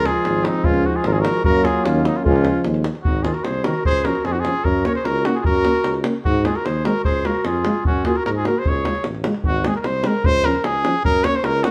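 Wild and virtuosic, this Balkan brass band piece in Db major moves at 150 BPM in a straight 2/4: an up-front cornet with light vibrato carries the melody over a soft-attack clarinet second line that drops out at 9.1 s, while a dark euphonium and a mellow, vintage French horn in the background fill the accompaniment, a warm, distant tuba holds the bass, and a tight, close davul enters at 0.1 s, the band playing live in one room with a wet large-studio reverb as the harmony cycles through Db, Gb and Ab.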